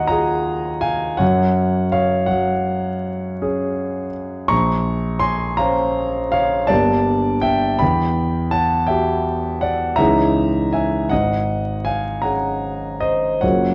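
Impressionist classical solo piano, luminous and hazy, unfolds in a slow, rubato 9/8 at 54 BPM on the dotted quarter, its concert grand spanning Gb1 to Db6 with deep bass, long sustain and audible action noise that keep it intimate and up front. The harmony drifts through colorful chords such as Ebm11, Bbmadd9, Gmadd9 and Emadd9 before settling on Ab9sus4 near 11.1 seconds. A recital hall reverb and vinyl crackle wrap this short excerpt in a dark, warm production.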